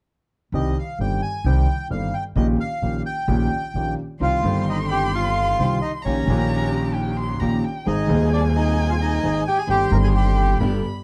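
A dark, warm production sits in a moderate club reverb on this short, dramatic and passionate tango fragment in C minor, taken from a longer piece at 131 BPM in 4/4 with a rubato feel. From 0.5 seconds a reedy, shadowy bandoneon carries the melody up front, while a concert grand piano, natural and deep in the bass with audible action noise, supplies the accompaniment close by. A woody upright bass played pizzicato on steel strings anchors the low end, the slightly loudest part of the mix. At 4.2 seconds a single bowed violin enters with a second line high above, expressive and smooth-topped, colored by vibrato and portamento. Alongside it, a lush, focused studio string section adds very quiet bowed stabs with vibrato, as the harmony moves from C minor through Eb7 and Ab before settling on C minor over G.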